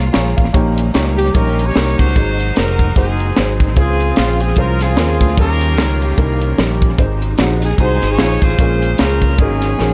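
A tight, dry funk drum kit with a high-tuned snare sits up front alongside a bright, punchy fingered electric bass, driving this swung, uptempo gospel excerpt with a reverent, soulful mood. A woody upright piano opens with a short fill and carries the accompaniment, while a very quiet, distant string section holds bowed chords with vibrato and portamento beneath it. At 1.2 seconds a smooth-topped horn section with light vibrato takes the melody, its tape echo feeding an echo-heavy mix that carries little reverb.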